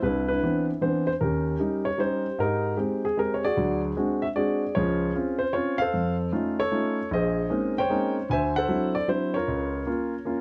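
A solo baby grand piano, warm, natural, intimate and up front with its action noise clearly audible, plays a swinging, playful jazz waltz in Ab major at 152 BPM, moving through rich chords such as Cmaj9, D7#11 and Bbm11 before settling on Db6 in this brief cut from a longer piece, all set in a moderate booth ambience and recorded to cassette tape.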